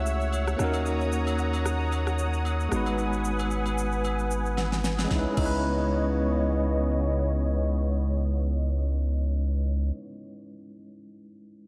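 Amapiano at 113 BPM in C# minor, this late-night, deep excerpt sits in a dreamy mix soaked in a lush hall reverb, with a gentle swing on the sixteenths. A punchy sine sub bass sits up front with a pitch-drop attack, holding down the low end until 9.9 seconds. A thick, detuned sawtooth pad with slow attack and long release carries sustained chords through chorus and sidechain pumping. A bell-like, barky tine electric piano plays clean accompaniment under a low-pass filter, and it is the last part sounding, ending at 11.7 seconds. A produced electronic R&B kit with a knocking kick, fat snare, rim click, shaker and crash runs until 5.5 seconds, with a fill from 4.6 seconds leading into the second section at 5.1 seconds. Saturated agogo bells, woodblock, maracas and group handclaps sit in the background, while the chords move from F#m7/C# through D#m7 and G#m7 to a closing C#m9.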